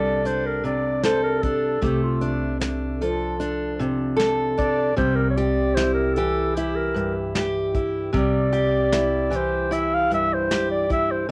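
Acoustic folk in C mixolydian at a relaxed 76 BPM in 4/4, this nostalgic home cassette recording features a mellow, smooth-topped clarinet in classical style soloing up front throughout, over a fingerpicked steel-string acoustic guitar with audible finger squeak, a woody, thumpy pizzicato upright bass on gut strings holding C2, and a soft brush kit of tight kick, medium-tuned snare and hi-hat entering at 0.3 seconds, all in moderate reverb with tape colouring on the clarinet, guitar and drums as the chords move from Gmadd9/C to F6/C and settle on C at 5.0 seconds.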